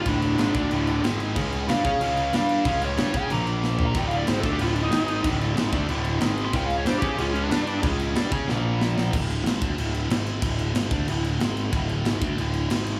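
Set in a small room with light reverb, this aggressive, dark heavy metal excerpt pairs a shadowy high-gain lead guitar solo with digital delay, ending at 7.8 seconds, against a distorted high-gain rhythm guitar riffing until 9.1 seconds and a scooped, bright high-gain guitar. Beneath them sit a growly, fuzz-overdriven picked bass up front and a tight, polished metal drum kit with a punchy kick, medium-tuned snare, crash cymbal and toms, plus short drum fills.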